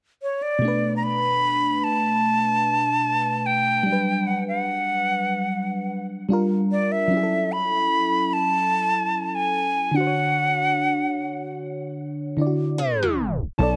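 A straight 4/4 pulse at 74 BPM carries this sensual, longing R&B fragment, where an airy, vibrato-laden jazz flute with tape echo sings the melody up front from 0.2 seconds over a soft, round FM electric piano treated with chorus and phaser, moving through Bm7, Gmaj7, Gm7, F#m7 and Dmaj7 in a moderate plate reverb, before a tape stop begins at 12.8 seconds as a bright picked archtop guitar enters with arpeggios and, at 13.6 seconds, a rubbery, bouncy square bass arrives on B1.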